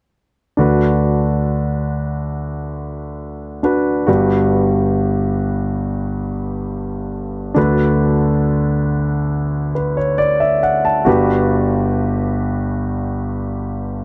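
A warm concert grand piano opens at 0.6 seconds and carries this heartfelt, emotional pop excerpt alone, moving slowly in a straight 4/4 between D6 and Gmaj7 chords and spanning its deep bass and upper register. The piano sits close and up front, intimate and polished, with long sustain and audible action noise. A small room reverb frames the dry, close recording in a 1970s studio style, and the passage runs until 14.0 seconds as part of a longer piece.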